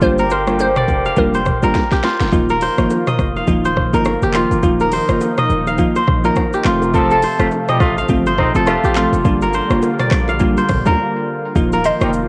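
Afrobeats at 104 BPM in Eb lydian, this joyful, breezy excerpt moves with a swung sixteenth-note feel and a homespun cassette-tape character under light reverb and digital ambience. A fingerpicked, ringing kora plays the riff up front from start to finish, crisp and acoustic with a tape echo trailing it, while a sparkling, bell-like FM electric piano supplies chorused accompaniment over chords that move from Gm7 to Ebsus2, F and back. The electronic afro-pop kit brings a deep kick, sharp snare, metallic hats, handclaps, rim clicks, shaker and toms, paired with a punchy, heavy 808-style bass and very quiet, band-limited congas and bongos that drop out at 11.0 seconds. A glassy, crystalline wavetable pluck with a nasal edge carries the melody only briefly, at the opening and again near the close, and a vintage horn section adds a second line at the start and returns at 6.9 seconds. After a drum fill, a smooth, detuned sawtooth pad enters in the background at 2.3 seconds with sustained chords, and a short break arrives just before the cut.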